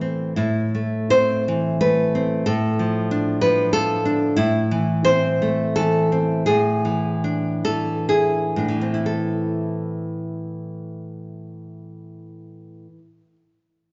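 In a rubato 3/4 that drifts between 58 and 96 BPM and slows from 3.4 to 9.1 seconds, this melancholic, intimate romantic piece for solo classical guitar moves through A minor, D minor over an A bass and E7 over A before returning to A minor as a new section begins at 9.1 seconds. The fingerpicked nylon-string guitar sits up front, woody and warm with the soft dullness of old strings, spanning A2 to C5. A wet recital-hall reverb with a 1.6-second tail surrounds it in a dark, church-like space, and this short passage is cut from a longer work.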